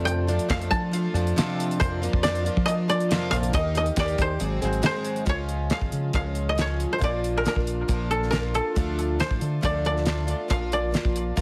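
The recording has a heavily compressed, radio-ready sound set in a small room, with multiband compression pressing the whole mix forward. This is a short cut from a longer piece of folk rock and heartland rock, and it carries an open-road, hopeful mood in a straight four-beat feel. A mellow, woody koto plays the melody up front, plucked with fingerpicks and given a dry tone that an analog delay trails behind. Beside it, a picked, plugged-in twelve-string acoustic guitar supplies boxy, parlour-sized accompaniment with a shimmering, octave-doubled ring, while a fingered electric bass sits underneath, dark, round and punchy in its direct, amped tone. A damped 70s drum kit enters at 0.1 s with a fat snare, tight kick and hi-hat. Around 5.3 s the music moves into a new section, with the chords shifting from Db to Bb and Dm.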